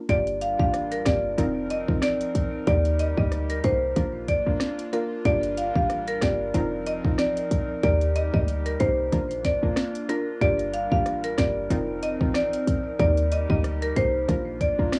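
A dry, small-room cassette sound frames this sultry, hypnotic dancehall excerpt, cut from a longer piece and built on a looping Gm7, F7sus4, Eb, Bb progression with a swung feel. An up-front, dark marimba struck with hard mallets carries the melody over an overdriven island pop kit of knocking kick, sharp snare, rim click and smooth hats, while a punchy, tight 808-style bass anchors the low end. Underneath, a mellow, round pluck with chorus and an airy, breathy, evolving pad both pulse with sidechain pumping, and the marimba trails an analog delay.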